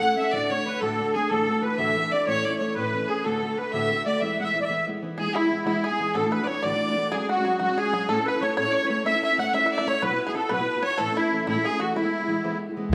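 The recording has a rough home-demo quality, with a moderate plate reverb that gives it a roomy studio tail. This is a bright, cheerful Celtic folk jig in 6/8 at 124 BPM, set in E mixolydian and cut from a longer piece. A reedy, shimmering musette accordion carries the melody up front, while a bright, earthy fiddle with light vibrato plays a bowed second line in the same register. A picked steel-string acoustic guitar, also up front, supplies warm accompaniment across a low-to-middle range, moving through chords such as D, Dadd9, A and E. At 5.2 seconds, as the second section begins, a twangy, percussive banjo played with fingerpicks joins in the background with its own second line, continuing until 12.6 seconds.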